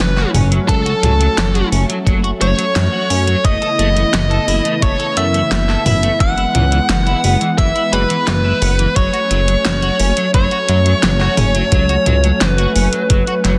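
A dark, distorted bluesy lead guitar carries the melody up front through tape echo in this driving, cinematic synthwave piece, backed by a glossy, chorused synth bass and a bold, brassy analog pad that both pump with the sidechain, a slightly broken-up electric guitar riff with ensemble chorus, a soft, pure FM bell line in the background with phaser, a pop drum kit with a fat snare, and a thumpy, overdriven electronic kick that enters at 0.7 s, the mix sitting in light digital ambience under a dense, heavily limited master.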